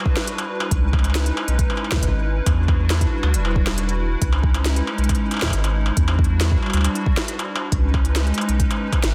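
A round, sine-like sub bass sits up front from 0.7 seconds, anchoring this intricate, eerie IDM excerpt as the harmony moves between Em9 and C#m9. A deep electronic kick holds the straight 4/4 pulse beneath an industrial kit of clanging snare, crisp hats and struck metal, tape-warm, re-recorded in a large room and trailed by digital delay. A hollow, flute-like pad of detuned square and triangle tones warbles in sustained chords with vintage ensemble chorus, and the mix carries light digital ambience inside a dense, heavily limited master.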